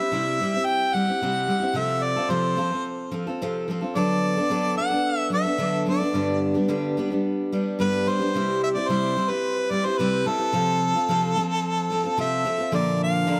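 A clear, close-miked harmonica carries the melody with light vibrato, scooped notes and a touch of digital delay over a bright, picked steel-string acoustic guitar with audible finger squeak, both up front from the start, in this nostalgic, open-road rock excerpt at 109 BPM, moving through C, F/C, D6 and G before turning to Bb at 12.7 seconds, all set in a dark production with a moderate plate reverb.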